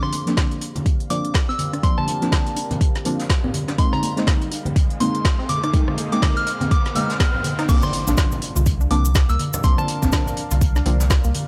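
A deep, up-front electronic kick anchors this soulful deep house excerpt at 123 BPM with a swung 16th feel, joined by a soft, warbling FM synth bell melody, dark wave-folded chord stabs with chorus and phaser, a moody detuned ambient pad in the background, and a round analog pluck arpeggio with tape echo, moving between C9sus4 and Bb9sus4. A layered electronic drum kit with woody snare and smooth hats, a brushed acoustic kit with a rolled-off top, low-tuned distant congas and a very quiet riser shape the build-up, while a filter sweep works on the arpeggio. At 7.7 seconds the drop lands with a faint impact, a round sine sub bass and a grainy, close cabasa, all through a dry, gritty hardware sound with transformer saturation and light studio ambience.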